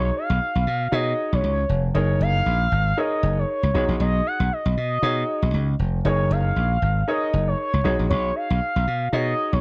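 A 117 BPM groove in 4/4, swung at 56% on the sixteenths, drives this feel-good, danceable snippet of early-eighties boogie funk, cut from a longer piece. Up front, a bright, punchy slap bass sits lowest and loudest in the mix, its direct, amped electric tone spanning E#1 to B2. Above it, a clear baby grand piano supplies accompaniment in the middle register with a natural, short-sustained sound. The melody belongs to an expressive portamento lead, a smooth, warbling vintage synth voice blending sawtooth and triangle with a fast attack, vibrato, chorus and slapback echo, gliding between C#5 and F#5. All three parts play throughout the 9.6 seconds as the harmony alternates between B69 and F#69, and the dry, close studio sound carries a 1970s character.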